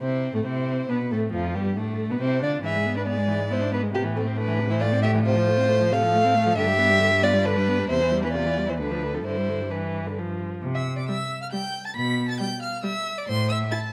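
A string quartet opens together at the start of this graceful, lively classical-period movement in A minor, a quick 3/4 at 137 BPM played with a flexible, rubato feel and tuned slightly below standard pitch. The first violin carries the melody across a broad span up to B6 with a rich, smooth, even tone, though it sits quieter in the balance than its partners. The second violin, dark and woody and placed up front, is the most prominent voice, spinning a second line in the middle register. Beneath them a focused viola fills in the accompaniment, and an up-front cello anchors the bass with a smooth, steady sound, and each of the four players uses vibrato. The harmony brightens toward C major from 5.2 seconds, and a new section begins at 10.6 seconds before this fragment of a longer piece breaks off on an open A chord. Close, detailed microphones and a light reverb give the quartet an intimate, clear presence.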